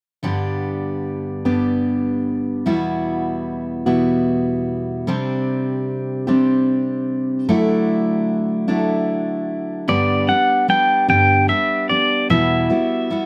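A picked jumbo steel-string acoustic guitar opens this gentle, warm acoustic folk passage in a steady 6/8, its full-bodied chords sitting up front in a close, detailed recording with light reverb, and at 9.9 seconds a clean, compressed electric pedal steel guitar, played with fingerpicks, joins above it to carry the high melody with slide and volume swells before the piece is cut off at 13.3 seconds.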